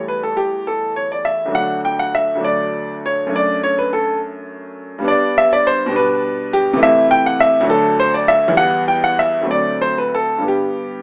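A clear, intimate baby grand piano plays alone, up front, with its action noise audible, in a dance-like, radiant baroque-style suite movement in 6/8, flowing with rubato at about 60-70 BPM counted in dotted quarters. The harmony opens on A5/E and settles in D major before moving to G major at 5.1 s, then passes through Am/C and Em to a D7 that resolves to G at 10.5 s, across a range from D2 to G5. Light reverb surrounds this natural-toned piano, while an AM radio sound colours the recording, which is cut from a longer piece.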